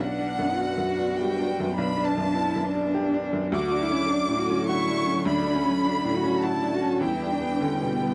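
Neoclassical piano and strings in 3/4 at 102 BPM, this fragile, reflective fragment moves with a rubato feel and is tuned slightly high at A4 = 441 Hz. A chamber violin section carries the melody from F#5 to D6, its bowed tone rich and focused, shaded with vibrato and placed up front. Beneath it a single cellist plays a second line, warm and expressive, with portamento and a smooth top. An upright piano gives a close, bright and woody accompaniment, slightly detuned, with audible action noise that adds intimacy. A studio string ensemble holds soft-attack sustained chords in the background, distant and likewise bending with vibrato and portamento, as the harmony passes from Gmaj7/B to Dmaj7 at 3.5 seconds and Em7 at 7.0 seconds in a dry, close 1970s-style studio sound with light reverb.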